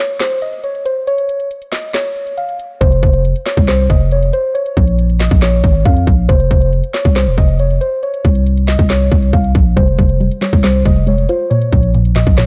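Dark and melancholic, this half-time trap cut at 138 BPM in F minor opens with muted, felt-like synth keys carrying a soft, intimate melody through chorus and a low-pass filter, joined at 0.2 seconds by an overdriven, up-front trap kit of hard-clipped kick, woody snare, handclaps and metallic hats, then by a growling, buzzy 808-style bass at 2.8 seconds, and finally by a hollow, bouncy square pluck at 9.8 seconds, all set in a dry, shadowy production.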